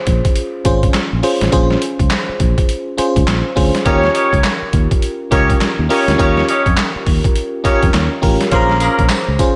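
Slick and punchy, this new jack swing R&B groove in Bb dorian rolls at 103 BPM with a swung sixteenth feel, opening on a glassy, bell-like FM electric piano, treated with chorus and tremolo, over a growly fingered electric bass. A gritty, overdriven sampler-style drum kit sits up front with a thumpy kick, high-tuned snare, hi-hat, handclaps and tambourine, and at 3.9 seconds a vintage horn section with vibrato and octave doubling adds loose stabs with slapback echo and delay as the chords move from Bbm7 to Eb7. A lush hall reverb gives the whole mix a big arena sound before this short cut from a longer piece returns to Bbm7 at 8.5 seconds.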